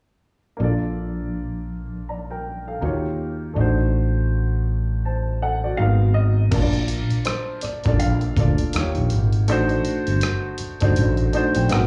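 This short excerpt sounds like a live club gig heard through the venue's PA, with a light wash of room reverb. It is relaxed, warm neo-soul R&B in B-flat major at 81 BPM, with a gentle swing on the sixteenths. A woody, polished upright piano sits up front with the chords from the start, its plate reverb and slapback echo adding sheen, while a fretless electric bass plays close and direct underneath, moving through lush changes such as Bbmaj7, Eb9 and D7b9. At 5.8 seconds a dark baby grand piano takes a brief, mellow melody, also dressed in slapback echo and plate reverb. A gritty, compressed sampler-style drum kit joins at 6.5 seconds with a thumpy kick, hi-hat, rim clicks and crash cymbal, giving the groove a dusty weight. The upright piano closes the clip with a short fill at 11.0 seconds.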